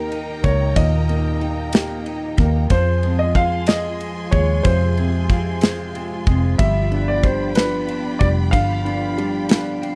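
A melancholic, dramatic six-eight pop ballad in F minor at 62 BPM, this dry, close 1970s-style studio recording has a polished grand piano carrying the melody over a worn, woody, slightly detuned upright piano accompaniment, while a round, foam-muted, dark fingered electric bass sits prominently beneath, an airy, up-front acoustic drum kit with a tight kick, medium-tuned snare and ride cymbal joins at 0.1 s, a lush, distant bowed string section with vibrato holds sustained chords, and a clean, compressed twelve-string electric guitar picks phaser-tinted arpeggios in the background as the harmony moves from Eb to Fm at 2.7 s and G7 at 6.6 s.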